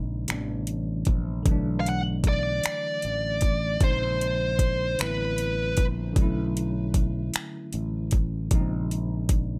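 Sultry and late-night, this slow six-eight R&B excerpt at 51 BPM sets a worn, slightly out-of-tune tine electric piano over a bright fretless bass with subtle chorus and an electronic kit of knocking kick, metallic hi-hat and finger snaps, while a dark, high-gain distorted lead guitar carries the melody from 1.8 to 5.8 seconds through chords such as Am11, Bm7 and A#m11 in a dry, close sound.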